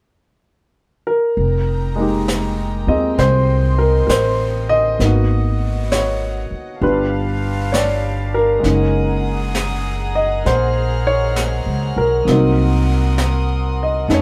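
Recorded as a band playing live in one moderately ambient room, this intimate, wistful jazz ballad in F minor moves at a slow, swung 66 BPM, cut from a longer piece. A concert grand piano, up front with audible action noise and deep bass, opens alone at 1.1 s before an upright bass, woody and thumpy in pizzicato, and an airy brush kit with a high-tuned snare and hi-hat join at 1.4 s. A dark, floating string section bowed sul tasto lays soft-attack sustained chords across a progression that runs from Fm11 through Abm7, G9 and Gb69 to Cm7b5.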